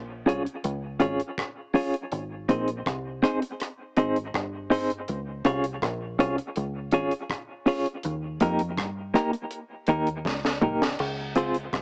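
This laid-back, uplifting roots reggae clip, cut from a longer piece, opens with a deep, fingered dub bass, dark, round and punchy with a foam-muted thump, moving between G1 and G2 at a relaxed 81 BPM in straight 4/4. At 0.3 seconds a dry acoustic drum kit joins, pairing a tight kick and high-tuned snare with rim clicks, hi-hat, toms and crash cymbal. At the same moment a clean, compressed electric guitar enters up front as the accompaniment, fingered in a range from Bb3 to Db5 and coloured by tremolo, dub echo and a cassette tape character. The harmony moves from Db to Ab, back to Db, then up to Eb before settling on Dbmaj7 at 11.0 seconds, just after a drum fill from 10.3 seconds. The whole clip has the hazy feel of a home cassette recording heard through a small speaker, with a touch of light reverb around it.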